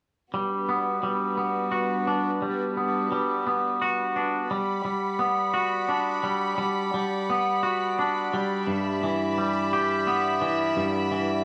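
Rock in 6/8 at a slow 58 BPM, this soaring, euphoric excerpt in G major sets an up-front, twangy, clean electric guitar playing fingered arpeggios against a rich chamber string section holding close, soft-attack, sul tasto chords that float gently, moving from Gmaj7 to Em7/G at 8.7 seconds, with the band captured live in one room on cassette tape inside a wet studio reverb.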